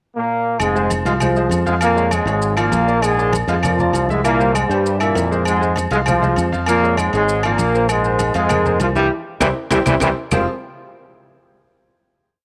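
Passionate and danceable, this short salsa piece in F minor moves at a brisk 198 BPM with a straight 4/4 feel. A bright trombone section enters at 0.2 seconds on a pickup and carries the melody up front, playing tight, punchy hook phrases with light vibrato and a smooth top, partly doubled in octaves. Beneath it, a growly fingered electric bass plays a tumbao that anticipates the chords, while a clear but worn grand piano lays down an octave montuno. The percussion forms a full groove: ringing agogo bells and timbales with a shell pattern, woody claves holding the two-bar time line in the background, very quiet congas with slaps and open strokes, and grainy maracas. The mambo section of horn riffs cycles through Fm, Db, Bb and C, with a drum fill and band accent from 9.1 seconds before the ensemble lands on a closing Fmadd9 chord at 10.3 seconds, all set in light reverb and small room ambience.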